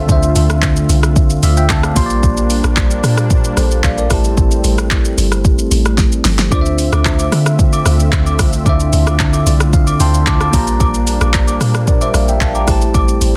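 A round, dark log drum bass anchors this hypnotic, deep amapiano passage, joined by an up-front deep house kit with a fat snare and metallic hats, a bell-like tine electric piano colored by phaser, a smooth, detuned analog pad pumping under sidechain, and agogo bells and woodblock that enter at 6.5 s, all in a dense, dry, heavily limited mix.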